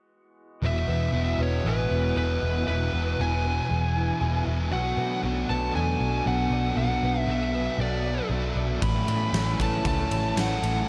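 A straight 4/4 pulse carries this blissful, wistful shoegaze and dream pop excerpt, where a round, foam-muted vintage bass and a dark, thick fuzz guitar riff with ensemble chorus sit up front beside a distorted lead guitar melody with tape echo, while a twangy, lo-fi electric guitar riff with reverse reverb and a boxy, shimmering, octave-doubled twelve-string acoustic playing fingerpicked arpeggios through lush chorus drift in the background over chords moving from Eadd9 to Bm7 and then A, until a huge arena drum kit with a punchy kick, fat snare and bright ride cymbal enters at 8.8 s, the whole mix soaked in dreamy reverb.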